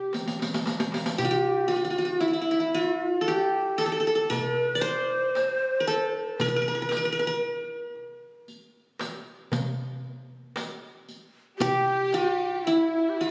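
A bright, fingerpicked qanun leads this passionate, festive Arabic maqam ensemble excerpt from the first moment, its triple strings sitting up front, with a breathy end-blown ney carrying a second line colored by vibrato. A metal-shell darbuka with a close, dry sound and a jingling riq, both struck with hard hands, open with a drum fill at 0.1 seconds and carry the 10/8 metre. A warm, bowed violin section played sul tasto sounds briefly at the very start and returns at 11.6 seconds, and the whole ensemble is captured on a phone in the room with moderate scoring-stage reverb and compression.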